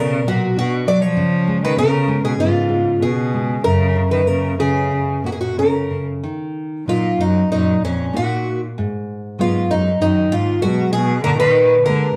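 Played rubato in 4/4, this passage from a longer fado-style ballad aches with longing and passion. A shimmering, octave-doubled twelve-string guitar carries the picked melody up front with plate reverb, while a single bowed cello sings a rich, close second line with vibrato. A dark, full-bodied fingerpicked nylon-string guitar supplies the accompaniment, all three heard throughout in a wet studio room, with the second section beginning at 6.2 s.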